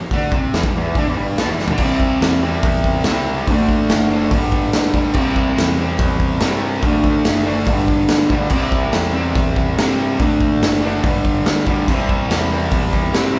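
A double-tracked fuzz guitar riff kicks off this swaggering, gritty garage rock excerpt at once, alongside a growling, overdriven picked bass sitting in the background, and at 0.1 seconds a raw, saturated drum kit joins with a punchy kick, medium-tuned snare, hi-hat, toms and crash, pumping in a bright stone room. A drum fill at 1.6 seconds launches a looping progression of C, D and G5 chords that drives on until the cut. The band sounds like it is playing live in one large studio room, with a moderate reverb and the guitar and drums up front.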